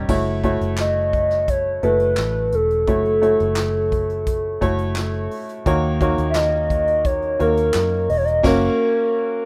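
Piano-driven pop with an uplifting, anthemic feel, cut from a longer piece and moving from F#m7 through D#m7 to F# in a rough home-demo mix with a moderate small-room ambience. A clear, woody, slightly detuned upright piano and a round, foam-muted vintage electric bass carry the harmony beneath a soft brush kit of punchy kick, medium-tuned snare, hi-hat, dark crash cymbal and handclaps, while a hollow, clarinet-like synth lead with chorus and vibrato sings the melody up front from 0.8 seconds. The band hits an accent at 8.4 seconds, and the piano and lead ring on alone until 9.5 seconds.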